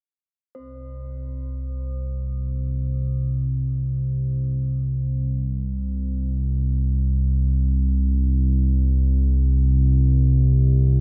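Unsettling and dark, this dark ambient drone excerpt drifts in free time as a faint, bright quartz singing bowl fades in from 0.6 seconds with pure, airy ringing and slow beating, while an up-front analog drone entering at 0.8 seconds supplies a low, evolving, warbling vintage sawtooth and pulse-wave bed with lush chorus, all set in a vast, echoing space with huge reverb.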